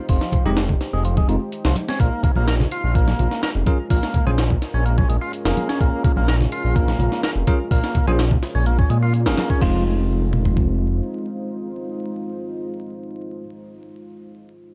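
A deep, rumbling detuned saw bass sits up front in this gritty, swaggering breakbeat cut from a longer piece in F minor at 126 BPM, joined by a compressed, pitched-up sampler-style drum kit with a thumpy kick and high-tuned snare, bright close congas in the background, an overdriven tonewheel organ riff with key click and dub echo, bell-like tine electric piano stabs, and a moody, mellow pad pumping under sidechain over Fm7 and Bbm7 chords, with the drop running to 9.6 seconds, after which the pad and electric piano carry on to 13.4 seconds amid vinyl crackle.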